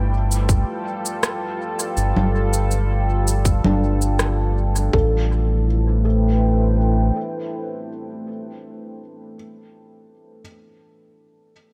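A straight 4/4 pulse at 81 BPM sets a spacious, deep ambient dub groove in A minor. An electronic shaker, rim click and congas enter at 0.3 seconds, with a tight, tape-toned kick joining at 0.5 seconds. Both sit up front with a small-room character, and the hand percussion trails off into dub echo. Underneath, a round analog bass holds low and dark with a fast attack, while a moody, full-bodied pad built from detuned sawtooth and sine layers with a sub octave swells in slowly on sustained chords, shimmering with chorus and its own reverb. A soft, felt-muted upright piano plays intimate arpeggios through tape echo, its action noise audible. The harmony rests on G7 before moving to Am7 at 4.9 seconds, all within a light reverb in this short cut from a longer piece.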